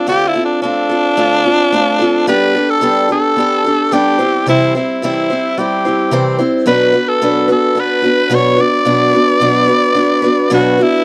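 Rock excerpt at 109 BPM in a straight 4/4 with a warm, open-road mood, where a raspy, gritty tenor saxophone carries an up-front, punchy solo melody with vibrato over a boxy, parlour-style picked steel-string acoustic guitar with audible finger squeak, moving from Dm7 to Gadd9 at 2.3 seconds and on through C and Bm, in a dry, close 1970s-style studio recording.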